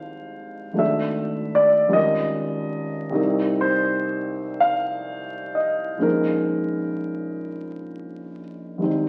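In a slow, rubato 6/8 that drifts between 39 and 52 dotted-quarter beats per minute, this hazy, luminous classical piece for impressionist solo piano unfolds over 9.1 seconds, cut from a longer work. The warm, intimate grand piano sits up front, ranging from Ab1 to F5 with long sustain and audible action noise as it moves through Abmaj7, Dadd9/Ab, Eb9/Ab, Cm7 and Bbm11. A stone-room reverb and the crackle of a very old 78 rpm record give the sound a faded, aged glow.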